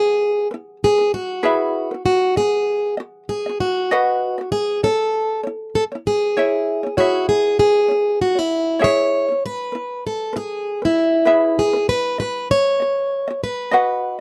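A picked, plugged-in steel-string acoustic guitar carries the melody with a warm concert tone and audible finger squeak, joined throughout by a light, fingerpicked ukulele, also up front, moving through E, B, A and C#m in this easy-going, heartfelt pop fragment with a gently swung feel, captured in a dry, close 1970s-style studio sound with a touch of reverb.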